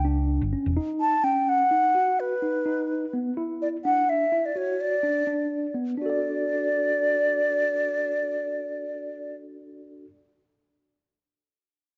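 This progressive instrumental fragment, cut from a longer piece, feels driving and intricate, moving at 253 BPM in eighths through 11/8 in D major over G5, B and D chords. A pure, soft-attacked concert flute with vibrato carries the melody up front until 9.4 seconds, while a clean tine electric piano heard through its built-in speakers spins mellow arpeggios until 10.1 seconds, and a dark, round hollow-body bass sounds only through 0.8 seconds. A light small-room reverb surrounds the sound, whose top end is rolled off, and a new section begins at 6.0 seconds.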